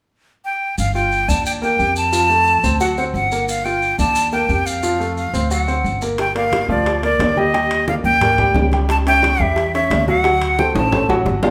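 Driving and danceable, this salsa excerpt opens with a breathy, vibrato-rich flute carrying the melody up front over a woody, thumpy pizzicato upright bass, a brilliant piano with audible action noise and short sustain, and grainy, distant maracas, until at 6.2 s the maracas drop out as tight high bongos, low-tuned congas and ringing metal-shell timbales join, with a drum fill from 10.8 s, all in a reverberant room.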